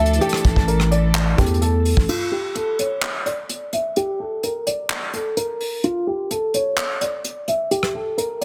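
A growling, buzzy 808-style bass hits hard up front in this menacing half-time hip hop and trap excerpt at 128 BPM, sounding alongside a filtered dark piano accompaniment and sul tasto chamber strings over an Asus4 chord, until those three parts drop out at 2.1 s for a break with a filter sweep, leaving a mellow, boxy, low-passed grand piano melody with tape echo and an acoustic brush kit with a tight kick, rim click, hi-hat, handclaps and crash cymbal, set in light reverb with a dense, heavily limited master.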